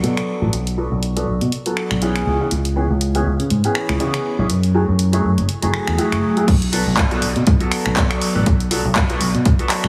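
A bright, long-sustaining baby grand piano, phased and pumping under a low-pass filter, opens this groovy, funky, swung filtered disco house excerpt alongside a dark, round fingered electric bass that also pumps through its own filter and an analog drum machine of hi-hat, handclaps, finger snaps and crash cymbal, all moving through Bm7, C#m7 and F#m9 during a filter sweep until a punchy up-front electronic kick enters with the drop at 6.5 seconds, the whole carrying light reverb and a heavily compressed radio sound.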